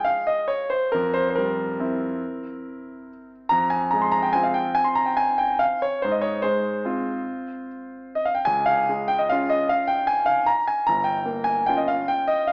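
Heard through worn, warbling cassette tape with pitch drift, a small-speaker sound, faint mains hum and a moderate recital-hall reverb, this elegant, wistful classical piano waltz excerpt in F minor flows in 3/4 with rubato between 134 and 163 BPM, its solo concert grand up front, clear and smooth with a deep bass and a vintage tone, moving from F minor through C7 over F, D-flat and a closing half-diminished G chord at 10.9 seconds.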